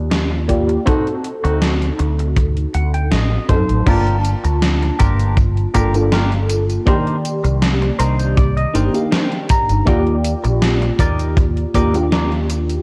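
A hazy, cassette-tape sound with light digital ambience frames this melancholic vaporwave excerpt at 80 BPM in G minor, where a dark, round fretless bass sits up front beneath a soft, warbling FM electric piano with chorus and analog delay, a bright, twangy clean guitar riff with lush chorus adds fills at 2.4 and 7.6 seconds, a gated 80s drum machine brings overdriven, gated-reverb snare, hi-hat, tambourine and crash, and a punchy kick thumps underneath as the chords move from Ebmaj7 through D7b9, Gm7 and Cm9.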